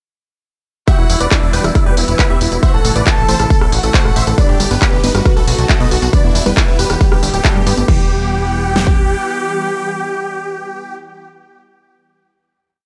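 A huge, detuned supersaw lead carries this driving, euphoric uplifting trance piece at 137 BPM in E minor, playing a repeating sixteenth-note riff over a pedal note in thirds and sixths, its bright tone shaped by phaser, sidechain pumping and digital delay. Beneath it, a clear, biting chamber violin section plays its own repeating riff in octaves with a touch of vintage 12-bit sampler grit and delay, while a very quiet, catchy square-wave unison lead doubles the anthem part. A lush supersaw pad holds sustained chords in the background, pumping with the sidechain, and a plucky analog bass rolls in funky sixteenths from 1.0 seconds. The up-front big-room kit drives a four-on-the-floor kick and huge snare, joined by an analog drum machine's programmed hats, claps, rim, tambourine and crash, and a lush, wave-folded unison pluck adds a 16-step arpeggio from 4.4 seconds. The drop moves through Emadd9, Am, Gadd9 and B before a final Emadd9 chord rings out from 7.9 seconds in light reverb, with the drums falling away shortly after.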